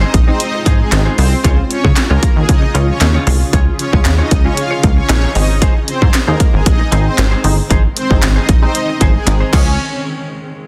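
A dense, heavily limited modern master with a digital ambience carries this summery, carefree dance-pop drop in Db major at 115 BPM, cut from a longer piece. Up front, an overdriven house drum kit with a punchy kick and cracking snare drives beside a funky, plucky analog bass, while a lush supersaw pad carries the melody and the pad, the crisp detuned wavetable chord stabs and the bass all pump to the sidechain. In the background sit a twangy, direct-recorded clean electric guitar riff under lush chorus and a cloudy, evolving granular pad, with a very quiet, hollow group handclap entering at 0.9 seconds and a drum fill arriving at 9.3 seconds.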